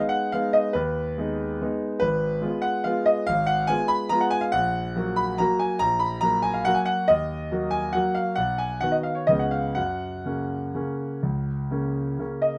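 A clear, up-front concert grand piano plays alone throughout this sparkling, graceful classical waltz in three, its open tone and deep bass shaped with rubato under light reverb in a short passage cut from a longer piece.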